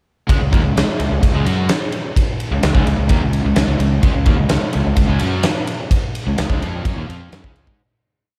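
A straight 4/4 classic rock groove at 128 BPM in Db major drives this confident, brief piece, where an up-front acoustic drum kit with a fat snare, punchy kick and ride cymbal powers a dark, fuzzy fingered bass playing eighth notes that double the power-chord riff of two overdriven picked electric guitars, one bright and one raw with slapback echo, the guitars sitting back in the mix and everything wrapped in light studio reverb from 0.3 seconds until a fade-out that begins at 5.9 seconds.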